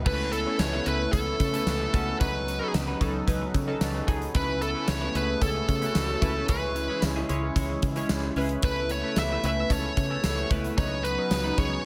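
Glossy, chorused retro synth keys open this nostalgic yet urgent 1980s-style pop cut at 112 BPM, over a smooth, detuned analog pad and a twangy, clean twelve-string electric guitar riff with subtle chorus and digital delay in the background. From 0.1 s a dark, high-gain lead guitar carries the melody up front, driven by a punchy, foam-muted fingered bass and a polished gated drum kit with a tight kick, medium-tuned snare and bright cymbals, while a very quiet, jingly tambourine joins at 0.6 s. The chords circle through Aadd9/C#, Badd9/C# and C#m in light small-room reverb.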